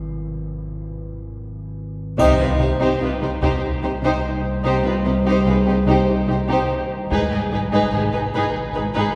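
Drenched in the long reverb of a concert hall, this ominous, tense suspense film score in 3/4 at 73 BPM opens over Abm with an eerie, metallic, inharmonic drone up front and a very quiet, thick-felt muted upright piano, until a band accent at 2.2 s brings in bowed string sections on Cm: a smooth violin melody with vibrato, a lush second violin line with portamento, viola, and cello and double bass in the background, joined by very quiet heavy-stick taiko and a brief triangle, before the harmony returns to Abm at 7.1 s.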